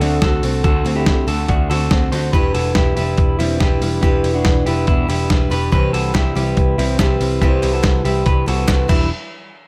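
A straight 4/4 groove from a gritty, compressed, up-front sampler-style drum kit with a thumpy kick drives this wistful, bittersweet stretch of jangly indie pop, cut from a longer piece, as a round, punchy foam-muted electric bass and a full-bodied picked dreadnought acoustic guitar sit beneath slightly broken-up arpeggios from an electric guitar through a small old amp, while a lightly driven lead guitar with tape echo sings in the background only until 1.9 seconds and a hollow, very quiet group handclap joins at 6.1 seconds, in a lightly reverberant space over chords moving from Em7 to Cmaj7 and back.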